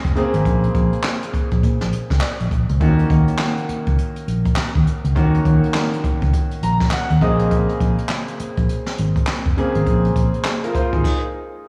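Punchy and confident, this short new jack swing cut from a longer R&B piece moves at 102 BPM in 4/4 with a 61% swing on the sixteenths, sitting in Eb dorian. A clear, natural grand piano plays the accompaniment up front with a subtle chorus, spanning Db3 to Bb5 over chords of Bbm9, Ebm7 and back to Bbm9, and it breaks into a fill from 6.3 to 7.5 seconds. Underneath, a vintage fingered electric bass sounds dark, round and foam-muted with an amped character, holding the low end from F1 to Bb2 and standing as the loudest part. The jazz brush drum kit sits up front and mid-forward, with dark cymbals, a high-tuned snare, a boomy kick, hi-hat, crash and handclaps, its rolled-off top giving it a warm studio-room feel. The mix is dreamy and soaked in a lush hall reverb with a 2.4-second decay alongside small room ambience, and the band cuts to a stop at 11.0 seconds.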